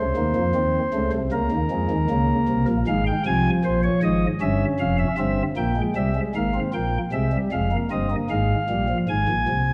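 In a straight 4/4 pulse, this brief passage cut from a longer baroque-style three-part fugue sets a contemplative yet driving mood on a solo pipe organ, whose soft, warm flute stops speak with chiff and baroque voicing up front from 0.0 to 9.7 seconds. The harmony moves from F7 through Bbm/Db, Fm/Ab, Edim7 and C7 to Fm before closing on a rootless Fm/Ab, all in a dark, warm production inside a reverberant recital hall.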